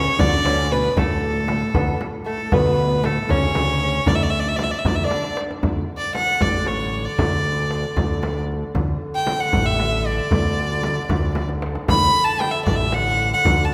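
A Persian modal ensemble piece in dastgah mahur on D, this passage moves at a stately 77 beats per minute in a straight 6/8, carrying a passionate, dignified mood. A single bowed violin leads up front with a rich, earthy tone, light vibrato and an airy bow, while a fat, saturated analog bass with a nasal, detuned edge and a fast filter pluck holds the low end throughout. In the background, frame drum and tombak keep the pulse from 0.2 s, the frame drum deep and large and the tombak tight, played with soft hands. For the opening section, a dark, intimate chamber cello section and a bright, delicate fingerpicked lute with gut double strings add second lines before both drop out at 5.4 s, during a drum fill. From 5.6 s a mellow, distant duduk enters, sustaining a D drone with scooped notes and folk-style vibrato, and another drum fill arrives at 11.4 s. A wet concert hall reverb surrounds the ensemble, and the recording is cut from a longer piece.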